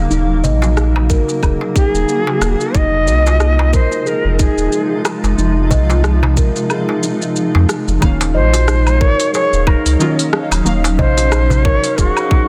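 A tongued, chiffing cedar flute with vibrato carries the melody from 1.8 s, its tape echo trailing over a hypnotic, meditative organic downtempo groove at 91 BPM in Eb dorian, swung on the 16ths. Beneath it, a round sub bass with tube saturation and a granular cloud pad with its own reverb both pump with sidechain alongside the tight electronic kick, which drops out from 6.7 to 8.0 s. A mallet-struck steel tongue drum spins delayed arpeggios, a crisp, dry darbuka and a produced drum kit of smooth hats, rim click, shaker and woodblock add texture, and a detuned chord stab with chorus joins at 8.0 s as the harmony moves from Fm7 to Ebm9 in this excerpt from a longer piece.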